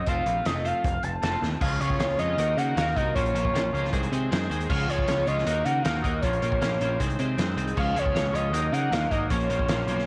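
A screaming, gritty overdriven synth lead carries the melody through chorus, cassette tape coloring and analog delay alongside a biting overdriven guitar riff in this restless, moody indie rock excerpt at 156 BPM in Bb minor. It is joined almost at once by a brilliant, twangy twelve-string electric guitar riff in the background, a growling, punchy overdriven bass and a loose, up-front drum kit with a fat snare and dark cymbals, whose fill at 1.4 seconds leads into a repeating Db, Ebm, Bbmadd9 and Ab/C progression. Meanwhile a very quiet, smooth analog pad slips in at 0.4 seconds, all within a dry home recording on cassette.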